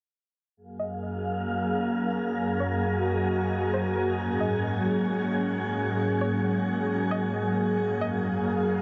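This is a short cut from a longer hip hop piece in Gb major at 133 BPM, moving in a half-time feel with a blissful, floating mood. It opens at 0.6 s with a glassy FM pad sitting up front: its mellow, sustained chords fade in slowly and linger on long releases, thickened by ensemble chorus and its own reverb. A string-like resonator pluck joins at 0.8 s in the background, carrying a twangy, full-bodied melody in bright notes that strike fast and decay, shaded by chorus, a filter sweep and digital delay. From 1.0 s an airy, breathy texture of wind-like tuned noise drifts in, softly sustained with its own reverb. The harmony moves from Gbmaj9 to Ab7sus4 and back, and the dark production is bathed in a long shimmer reverb.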